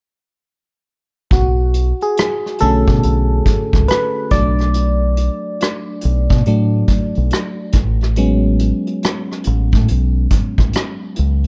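This short R&B and neo-soul excerpt has a sultry, late-night mood, moving at a slow 70 BPM in 4/4 with a 16th-note swing in B dorian. From 1.3 seconds the full band plays together, with an FM electric piano taking the solo spotlight through a glassy, bell-like tone that warbles under chorus and decays after each fast attack. A deep dub fingered electric bass sits just beneath it, dark, round and punchy, covering a low register with a direct, amped sound. A vintage brush drum kit supplies hi-hat, a tight kick and rim clicks, with a rolled-off top and a small-room character. The harmony rests on Bm7 before shifting to Amaj13 at 7.7 seconds, and the dry, dusky production keeps all three parts close and intimate until the clip ends at 11.5 seconds.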